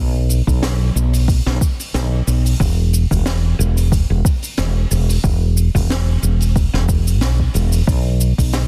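A dark, round, woody fretless electric bass with a punchy hollow-body tone sits up front from the start of this relaxed sunset chillout excerpt at 91 BPM in 4/4 with a light 16th-note swing, joined at 0.3 seconds by a small-room brush kit of cabasa, hi-hat and high-tuned snare and at 0.5 seconds by a soft, tape-warm electronic kick re-recorded in a large room, in a dry, dense, heavily limited modern mix.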